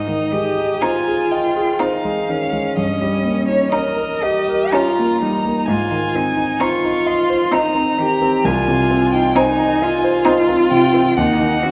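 Moving in a rubato 3/4 at roughly 57-67 BPM, this lyrical, serene slow romantic movement for piano quintet in Ab major is cut from a longer piece. An up-front solo violin carries a smooth, clear melody with vibrato, while a more distant cello sings a second line and the concert grand piano, up front with deep bass and short sustain, supports them over a progression from Ab through Eb7/G and back. From 0.8 to 10.9 seconds a second violin, rich and focused, adds a very quiet second line and a viola lends an even, very quiet accompaniment, all bathed in the reverb of a recital hall.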